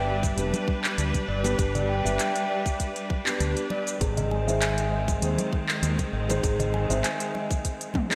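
Bathed in a lush hall reverb with a bright 1980s-style digital sheen, this short organic downtempo excerpt feels mystical, its harmony moving from G to Ab at 4.0 s. A soft, felt-muted upright piano with audible action noise and digital delay plays accompaniment beside a rich, bowed string section holding sustained chords, both pumping with the sidechain. Above a dark, punchy fretless bass, a round, ringing steel tongue drum with vintage 12-bit grit and delay spins arpeggios. A tight, tape-warm electronic kick and an organic electronic kit with crisp hats, handclaps, shaker, toms and gated reverb enter at 0.2 s alongside bright congas in the background, closing on a drum fill at 8.0 s.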